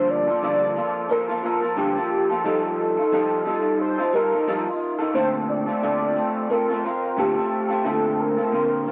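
Wistful and mellow, this short indie pop excerpt at a gently swung pace pairs a velvety, detuned synth lead carrying the melody through lush chorus and plate reverb with a twangy, slightly broken-up electric guitar from a small old amp picking through Gm9, F9 and Bbmaj9 up front, all wrapped in a small wet room and the warbling drift of worn cassette tape.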